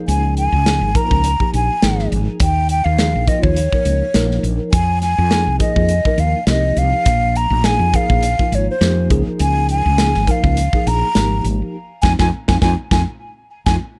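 A breathy, mellow concert flute carries the melody up front in this short excerpt of intense, nocturnal electric jazz fusion in F minor, its straight, soft-attacked tone close-miked and trailed by tape echo. Underneath, a woody fretless electric bass sits dark, round and punchy, direct and amped with a hollow-body character, while a modern studio drum kit plays hi-hat, a tight kick and a medium-tuned snare in a small acoustic room. A worn, slightly out-of-tune tine electric piano supplies clean accompaniment through its built-in speakers, colored by an ensemble chorus and sitting lower in the balance than the other parts. The groove moves at 103 BPM in 4/4 with a light swing on the sixteenths, cycling through chords such as Db6, Eb7(no3), Fm7 and Bb5. The band hits an accent from 11.7 seconds, and a drum fill begins at 12.9 seconds as the passage closes, all in a dry space with little reverb.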